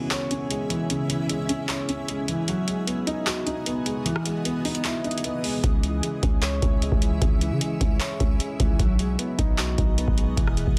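A booming analog drum machine sits up front in this menacing, brooding excerpt of trap-flavored hip hop, its deep kick, metallic hi-hats, handclaps and rim clicks carrying a tape-warm electronic character over a half-time feel. A dark concert grand piano, mellow and boxy with a heavy bass register, plays accompaniment through a low-pass filter from the very start. Alongside it, a granular cloud pad of blurred, detuned unison voices holds evolving sustained chords, bathed in its own reverb and lit by a bright edge. The drums arrive at 0.1 s, and the opening stretch plays as a break until 5.6 s, when a growling, buzzy 808-style bass enters with fast-attack, decaying notes. The sound is dry, dense and heavily limited in a modern master.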